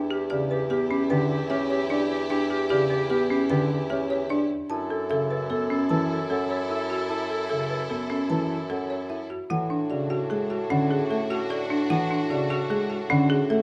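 A close, detailed recording set in a moderate recital hall reverb gives this minimalist classical pattern music a clear yet airy frame, cut from a longer piece and moving at 150 BPM in a straight 6/4 with a hypnotic, propulsive mood. A woody marimba with rosewood bars carries the melody from the background, while a second folk marimba, dry, rustic and boxy with hardwood bars, spins out prominent percussive arpeggios. A smooth-topped clarinet traces a second line, and a rich, focused violin section holds bowed, vibrato-tinged sustained chords beneath. A distant, roomy bassoon with a soft attack supplies the bass, and a dark, mellow concert grand piano, up front with audible action noise and deep lows, joins the accompaniment at 0.3 seconds. The harmony moves from Em7 to F#m7 at 4.7 seconds before settling onto Dmaj9/A at 9.5 seconds, where a new section begins.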